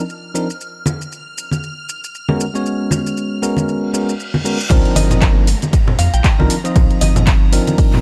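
Bell-like tine electric piano stabs sit up front in this late-night deep house excerpt, roughened by vintage 12-bit sampler grit and tape echo over shimmering string-machine violins with ensemble chorus, a punchy analog drum machine with crash, handclaps, hi-hat and shaker, and low-tuned, hard-handed congas, all under a swung sixteenth-note feel. A reverse cymbal and downlifter enter at 4.0 seconds, leading into a drop at 4.7 seconds, where a deep sub bass with octave, tube-saturated and sidechain pumping, arrives with an electronic kick and a very quiet swinging big-band kit of hi-hat, ride and snare. At 5.0 seconds a glassy wavetable pluck with chorus and a filter sweep adds a background melody, and the whole excerpt has a dry, gritty hardware sound.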